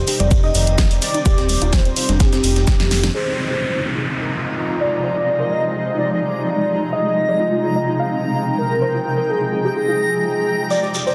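Bittersweet and driving, this progressive house excerpt moves at 127 BPM in F dorian, cut from a longer piece. A velvety, detuned synth lead carries the melody over a shimmering, ethereal pad of sustained chords, while a soft, round pluck traces arpeggios in the background under a filter sweep, and a reversed, dreamy texture hovers high above. For the first 3.1 seconds a fat analog bass, thickened by tube saturation, anchors the Cmadd9 harmony alongside a punchy, up-front electronic kick, a pop drum kit with a fat snare, a gritty, pitched-up breakbeat kit, congas and a grainy, distant shekere, ending in a drum fill from 2.7 seconds. At 3.1 seconds the harmony shifts to Fm7 as the rhythm section drops away, leaving the lead, pad, pluck and texture to float while an electronic downlifter falls through until 6.9 seconds, and the shekere returns briefly at the close. Sidechain pumping breathes through most parts, with chorus and tape echo on the lead and pluck, all set in light digital ambience and a dense, heavily limited modern master.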